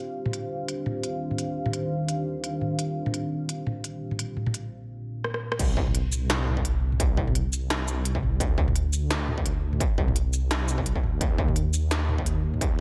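A deep, rumbling detuned saw bass drives this dark, cinematic half-time drum and bass cut at 171 BPM in C minor, arriving at the 5.6-second drop with a distorted electronic kick, after a moody, evolving ambient pad holds sustained Eb and Bb chords under a filter sweep with chorus and sidechain pumping, while a tape-warm industrial kit of clanging snare, smooth low-passed hats, rim clicks, shaker, crash and toms plays from 0.3 seconds and fills just before the drop, the kit and kick sounding re-recorded in a large room beneath light reverb.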